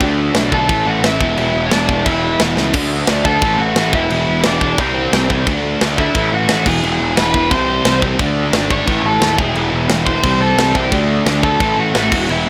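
Punk rock at a rebellious, rowdy 176 BPM, cut from a longer piece, where a tight, up-front metal drum kit with a medium-tuned snare drives a dark sludgy guitar, a bright distorted rhythm guitar, a very quiet double-tracked fuzz guitar and a growly overdriven bass through a D, A, E and C progression, while a high-gain lead guitar enters at 0.5 seconds and a drum fill at 2.6 seconds kicks the riff into its repeat, all dry with little reverb.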